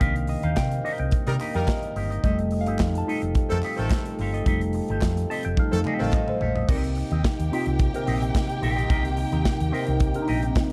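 A worn, slightly out-of-tune tine electric piano, lightly overdriven through a combo amp with phaser, solos until 6.7 seconds over a driving, danceable 108 BPM disco groove in C dorian on Cm7 and F9, alongside a punchy modern studio drum kit with bright cymbals and a fill at 5.6 seconds, a round, dark hollow-body fingered electric bass, twangy envelope-filtered electric guitar, mellow French horns holding sustained chords, tight, clear horn stabs with octave doubling, a hollow group handclap in the background, and, from 6.7 seconds, a lush, expressive violin section, all set in a studio reverb with a dark, warm production.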